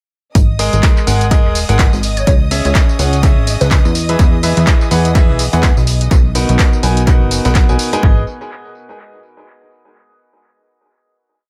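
A bright grand piano riff with audible action noise and delay leads this energetic, bittersweet piano house piece at 125 BPM in G# minor, over a punchy four-on-the-floor electronic kick, a funky, wave-folded plucky analog bass with tube saturation, dry programmed claps, hats and tambourine, a distant, very quiet brushed kit, and a lush violin section holding high chords in the background, with piano, bass and violins all pumping with sidechain, while a glassy, detuned wavetable pluck adds short chorused phrases from 2.2 to 4.0 s before the drop gives way at 8.0 s in an echo-heavy mix.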